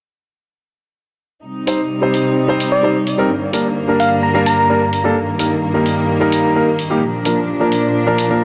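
Emotional and euphoric, this short excerpt of festival progressive house moves at 129 BPM in a straight 4/4, cut from a longer piece. A chamber string section opens at 1.4 seconds with intimate, bowed sustained chords played sul tasto with light vibrato and a soft attack, their tone softened by a low-pass filter. From 1.7 seconds a concert grand piano carries the accompaniment up front with a deep bass and a dub echo, while an overdriven, layered electronic hi-hat sits forward in the mix. Between 2.7 and 5.1 seconds a round, gentle FM synth lead with a keys-like, fast-attack, decaying tone sings the melody from the background, colored by chorus, vibrato and digital delay. The harmony moves through Cm, Gm, Eb/G and Bb, and a huge ambient reverb wraps the whole passage in a spacious, lingering haze.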